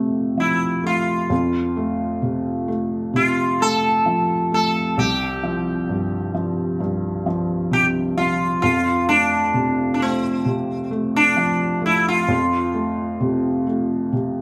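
A plucked sitar carries the melody in this tender, heartfelt pop passage, entering at 0.4 seconds with a buzzing, shimmering tone, its sympathetic strings ringing around each note. Beneath it, a felt-muted upright piano, present from the very start, plays a soft, mellow accompaniment in its low register, with the faint clatter of its action audible up close. Both instruments sit up front and equally balanced, giving the performance an intimate, heartfelt quality. The tune moves at a slow 66 BPM in a straight 4/4, in F major tuned slightly under standard pitch at A4 = 439 Hz, with the harmony resting on F, shifting to Csus4 at 5.0 seconds and returning to F at 8.6 seconds. Played live together in one room with a moderate studio reverb, this brief fragment of a longer piece feels close and unhurried.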